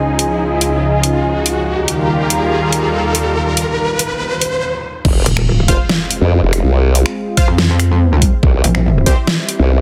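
A dense, heavily limited mix in a light reverb opens this short cut from a heavy, chaotic half-time wobble dubstep track. The build-up is carried by a lush, thick unison pad of detuned sawtooth and square waves, bright and sustained with a slow attack, chorus, sidechain pumping and a filter sweep. Beneath it sit an electronic riser and dubstep drums with bright hats, finger snaps and a huge, tape-tinged snare with soft clipping, all moving through Dbadd9 and Ebadd9 chords. After a brief stop at 4.6 seconds, the drop hits at 5.0 seconds with an electronic impact and an overdriven, knocking kick that sits up front beside the kit's crash cymbal. Two wobble basses take over on F minor: one a compressed, chorused blend of sawtooth and sine pushed through a formant filter and overdrive, the other an aggressive, metallic FM tone with distortion and chorus. A punchy, detuned supersaw stab with a filter sweep and dub echo sits lower in the mix, and the harmony shifts to C near the end.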